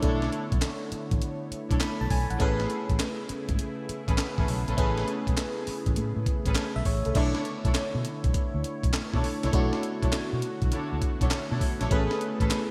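Gritty, compressed breakbeat drums with a thumpy kick, high-tuned snare, handclaps, hi-hat, crash and gated reverb open this confident, bouncy swung new jack swing excerpt alongside a round, foam-muted fingered electric bass, a glassy, bell-like FM electric piano treated with chorus and phaser, a swirling, detuned sawtooth pad, and veiled, distant muted string stabs with delay, all set in a lush hall within a bright 1980s-style digital production as the chords move from Bm11 to Amaj9.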